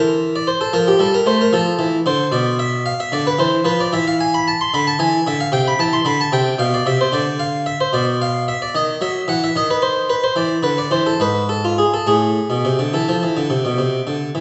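A round, plucked French-style harpsichord on a single set of strings sits up front in this grave yet flowing baroque-style suite movement in A minor, cut from a longer piece. It moves at 74 BPM in a rubato 12/8 with uneven beats, tuned to A4 = 438 Hz, and wanders through chords such as Dm69, Bdim and D#m6 before an E7 settles onto A minor at 12.1 seconds, all bathed in a wet recital-hall reverb with a softened, rolled-off top end.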